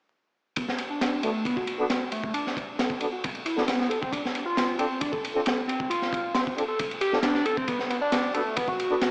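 Gritty and swaggering, this breakbeat excerpt runs at 135 BPM in B phrygian, with a crunchy, saturated drum kit of tight kick, high-tuned snare and dark ride cymbal sitting up front from 0.6 seconds. A screaming, guitar-like overdriven synth lead carries the riff, thick with distortion, chorus, phaser, tape echo, 12-bit sampler grit and a filter sweep, while a soft-attack brass section adds tight, low-passed stabs from 1.2 seconds over chords moving from Bm7 to Dm7 and back. Light studio reverb, vinyl crackle and a small-speaker tone give the whole a lo-fi, dusty edge.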